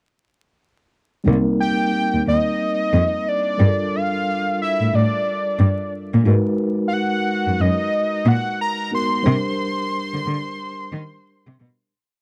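Sultry and introspective, this short neo-soul R&B piece moves at 90 BPM in 4/4 with a swung sixteenth-note feel, set in C minor. A mellow tine electric piano enters at 1.2 seconds with clean, held chords in rootless voicings, sounding through its built-in speakers and touched with grace notes as the harmony passes from Cm7 to Gm9, Abm9 and finally C7sus2. Beneath it, a rich, smooth bowed cello carries a laid-back bass line, even and up front, its vibrato singing and its line shaped by chromatic approach notes. The melody comes from a fat analog lead built on detuned sawtooth and triangle waves with a sub octave and wave-folding, its bright, sustained tone shaped by a filter sweep, chorus and vibrato as it states short call-like motifs. The close, dry 1970s-style studio sound sits in a small room with a bed of vinyl crackle, and the piece fades out from 9.2 seconds to its close at 11.9 seconds.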